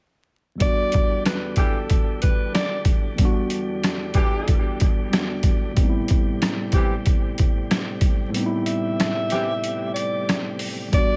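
A mellow tenor saxophone with subtone, vibrato and scooped notes sings a jazz-style solo through tape echo near the start and again from 8.7 s in this reflective, dark, swung boom-bap hip-hop excerpt. It plays over gritty, compressed, pitched-down sampler drums with a thumpy kick sitting up front, a worn, slightly out-of-tune tine electric piano heard through a combo amp and cassette tape, a bright, lightly overdriven tonewheel organ holding chords through a fast rotary speaker, and tight horn-section stabs with their own tape echo. All of it moves from Em7 to Am7 beneath vinyl crackle and light reverb before a break arrives at 8.3 s.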